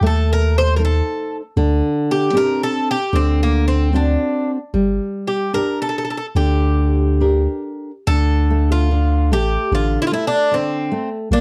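Rubato at 74 BPM in 4/4, this passionate, mournful fado-style ballad excerpt sets a metallic, double-strung Irish bouzouki melody with slapback echo over fingerpicked classical nylon-string guitar with audible finger squeak and a deep, punchy sine sub bass with a pitch-drop attack, all close and dry in a 1970s-style studio sound, moving from G harmonic minor through Adim, D7sus4, D7 and Gm before shifting to D minor at 8.1 s.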